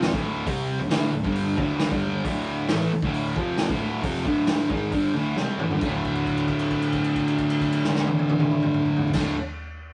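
Garage rock at 134 BPM in a straight 4/4 with a swaggering, raw mood, driven by a bright, picked, double-tracked fuzz guitar riff around a D5 chord that sits up front over a gritty, saturated acoustic drum kit with a boomy kick, medium-tuned snare, hi-hat, toms and crash, where a drum fill at 5.4 s leads into a held note from 5.8 s that rings almost to the close of this short cut, all heard as a rough rehearsal-room recording with moderate reverb and a muffled top end.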